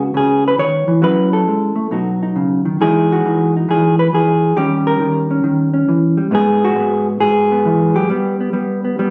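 Solo jazz with a late-night, swinging mood, this excerpt cut from a longer piece moves at 136 BPM in 4/4 with a swing feel on the eighth notes, in G# minor. A single hollow-body electric jazz guitar, dark, clean and fingered, sits up front across the whole 9.1 seconds, ranging from G#2 to C#5 over changes that run from C#m7 through F#m7, B7 and Emaj7 to D#7 and G#m7. The room adds light reverb, and the recording was captured on a phone in the room, with studio reverb and compression applied.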